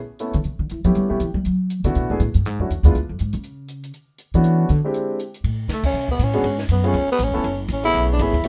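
A light reverb sits on this short clip of small-group swing and bop, which carries a sophisticated, playful mood at a brisk 240 BPM in 4/4 and A major. The woody, thumpy pizzicato upright bass sits up front and is featured through the first 5.4 seconds, supported by a warm grand piano comping with long sustain and a compact cocktail drum kit with dry, dark cymbals, a high-tuned snare and a tight kick. The harmony moves through colourful chords such as A7, Bm11, a Ddim and an E7alt before landing on Aadd9 at 5.4 seconds, where a new section begins. A growling tenor saxophone takes the melody at 5.7 seconds, breathy and raspy with subtone, vibrato and scooped notes over a smooth top, and the band hits an accent at 5.8 seconds. The section closes over F#madd9, C#7b13 and F#m11 before the recording breaks off at 8.5 seconds.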